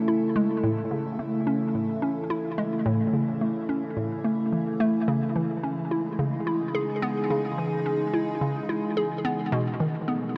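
An evolving wavetable pad opens this short cut from a longer piece of ambient, sequencer-driven space music, its sustained chords morphing slowly across a range of B2 to A4 and colored by chorus, built-in reverb and phaser. A moment later a hollow square pluck enters with a bouncy riff spanning A2 to G#4, its detuned, warbling, vintage tone carrying a noise layer, a filter pluck with a fast attack, and chorus and delay. Both parts sit up front at an even level, set at 108 BPM in a straight 4/4 and in A lydian, tuned to A4 = 442 Hz. The harmony moves from A to C#madd9 at 5.1 seconds and reaches B7(no3) at 9.5 seconds. A huge, wet ambient reverb with an 8.3-second tail stretches the sound into an expansive, luminous space.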